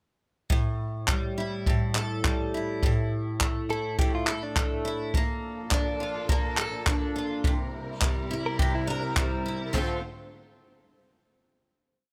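A lightly reverberant mix carries this short, reflective and tender acoustic pop piece with a gentle swing. A bright, double-tracked steel-string acoustic guitar plays alternating-bass fingerpicking up front, with audible finger squeak, over a roomy, distant jazz brush kit with a boomy kick, handclaps, toms and crash cymbal. A clean, compressed electric guitar recorded direct adds short fills between phrases from 3.7 seconds, and a lush, bowed string section with vibrato and portamento enters in the background at 5.1 seconds, sustaining chords through the pre-chorus into a closing Dm7 at 9.7 seconds.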